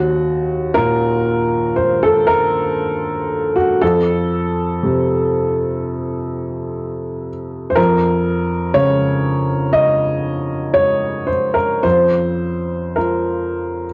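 A woody, boxy upright piano, up front with audible action noise and long sustain, plays alone through this intimate, melancholic 13.9-second fragment of a longer neoclassical minimalist piece in Bb harmonic minor, moving rubato at roughly 54-62 BPM in 4/4 from Ebm to F to Bbm/F, with moderate spring reverb, small-room ambience and the character of a home cassette recording.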